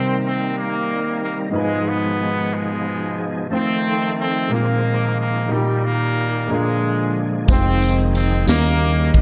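A straight 6/8 pulse carries this slow, soulful gospel passage, cut from a longer piece, as an up-front horn section with light vibrato and a smooth top sings the melody over open baby grand piano chords and a reedy tonewheel organ sitting in the background through a fast rotary speaker and chorus vibrato. At 7.5 seconds a growly fingered electric bass and a punchy, polished fusion drum kit with kick, high-tuned snare and ride cymbal arrive, joined by a jingly, distant tambourine until 8.8 seconds, in keeping with the passage's jubilant mood. The harmony moves from Cm7 through Bb9sus4 and Eb/Bb to a closing Eb7b9, framed by a moderate concert hall reverb.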